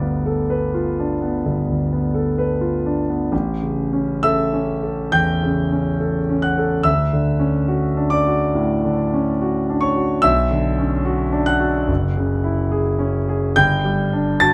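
Rubato phrasing in 4/4 floats around 61-73 BPM in this serene, luminous fragment of impressionist classical solo piano in A mixolydian. A clear concert grand, placed up front with a deep bass and long, natural sustain, spans F#1 to A6, opening on a G9 chord before a new passage begins at 3.3 s on A and drifts through Dmaj7, Bmadd9 and F#sus2 harmonies. Light reverb gives the piano a gentle sense of space through to 14.5 s.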